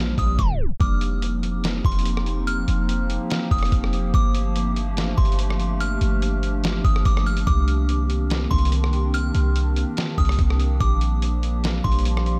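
Atmospheric cloud-rap hip hop with a dreamy, floating half-time feel, where a delicate, tinkling FM tine bell melody with chorus and diffuse delay drifts over a warbling, detuned tape-like pad that pumps with sidechain, a deep, boomy sine 808 bass sits up front, and a muffled, pitched-down lo-fi sampler drum kit with a thumpy kick, snare and rim click enters at 0.2 seconds, all soaked in cathedral reverb, with a brief tape stop at 0.4 seconds in this excerpt from a longer piece.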